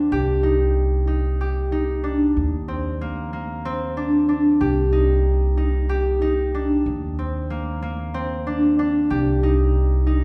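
A reverberant recital hall surrounds this brief 10.2-second cut from a longer contemporary chamber piece, heard from further back in the room. Hopeful yet restless, it moves in an uneven 7/8 at 187 BPM counted in eighths. Concert harp plays ringing, fingerpicked arpeggios over a woody, thumpy pizzicato upright bass on gut strings, as the harmony alternates between C minor and an E-flat power chord throughout.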